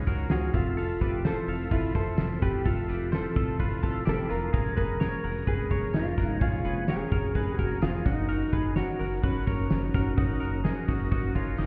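A loose indie drum kit leads this breezy, bright excerpt of jangly indie pop, its punchy kick and fat snare set in a pumping studio room as it drives a straight 4/4 at 128 BPM from 0.1 seconds on. Just beneath it, a round analog bass sits up front, deep and dark, anchoring the low end. A twelve-string electric guitar picks twangy, bright arpeggios through an analog delay, while a mellow electric guitar carries the fingered melody from 0.3 seconds. A buzzy vintage combo organ with light vibrato fills in the accompaniment, a string machine set to cellos holds slow-attack sustained chords with phaser and ensemble chorus, and a very quiet tambourine adds a jingly sparkle. The harmony moves from Dbadd9 through Fmaj7 and Bbm7/F to Gb6, and the whole mix sounds muffled, as if heard through a wall, with a stone room reverb around it.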